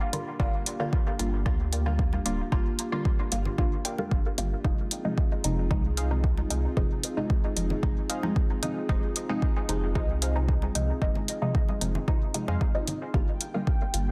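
Dub techno with a hazy, cavernous mood, this cut from a longer piece moves in a straight 4/4 over a slow shift from Gm7 to Fm7, returning to Gm7 near the end. An overdriven, up-front electronic kick and a gritty electronic hi-hat drive the groove, both carrying the boxy color of a small room. Beneath them, a clean, smooth sine sub bass pumps against the kick, while a moody, detuned analog pad with a moving notch and a chorus sheen holds dark, sustained chords. The main dub chord stab is muted and plucky, phased and trailed by dub echo, and a fainter stab riff higher up evolves under a filter sweep. Layered congas sit far back in the echo, and a bubbling, resonant texture with random filter steps and its own reverb surfaces only at 13.4 seconds, all within a dense, heavily limited digital space.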